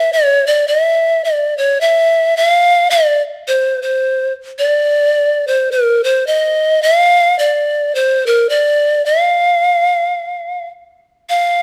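Sunny and relaxed, this short Hawaiian excerpt drifts along at 107 BPM in 4/4 with a gentle swing on the eighth notes. A polished pan flute plays solo throughout, staying within a compact range from Bb4 to F5. Its woody, airy tone carries vibrato, tongued attacks and a breathy chiff at the start of notes. Miked closely and placed up front, the flute sounds detailed and intimate under a light touch of reverb. A brief opening section gives way at 2.3 seconds to a longer passage that runs to the end at 11.6 seconds.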